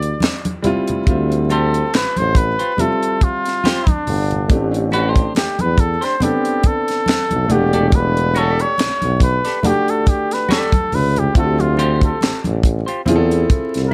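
A cup-muted trumpet carries the melody throughout, soft, veiled and breathy with a light vibrato, taking a jazz-style solo from 1.1 seconds over a slow 70 BPM neo-soul R&B groove in D dorian, with a soulful, introspective mood. Beneath it, a warm tuba with vibrato holds the bass, a tight, dry funk kit with a high-tuned snare, handclaps and hi-hat sits up front, and an intimate grand piano with audible action noise moves through Dm11, Am11 and Em11 chords. Ringing congas sit in the background from 0.2 seconds, a dark, clean semi-hollow electric guitar adds a fingered second line from 1.5 seconds, and light reverb and vinyl crackle color this excerpt cut from a longer piece.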